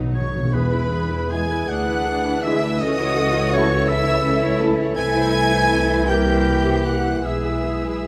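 Lush violins with vibrato sing the high melody of this tender, rubato orchestral slow movement in 6/8, over dark, woody double basses set up front, expressive cellos, rich violas, a second violin line, a mellow bassoon and sustained French horn chords, while a clear oboe, a pure flute and a soft-attacked clarinet add background lines, and hard-mallet timpani open with a brief fill before falling silent at 1.7 seconds, all captured close and detailed with light reverb.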